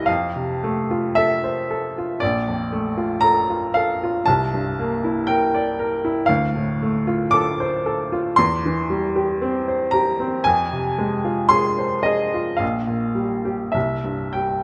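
Mournful and wistful, this romantic classical nocturne for solo piano drifts at 57 BPM in 4/4 with a free, rubato feel and uneven beats, settling into F minor from 8.4 s. A bright upright piano carries everything alone across a range from Bb1 to D6, its woody, brilliant tone sitting up front in a moderate recital hall reverb. The harmony moves from F through Bbmaj7, C9 and Dm7 before turning to Fm at 10.5 s and resting on C, as this excerpt is cut from a longer piece.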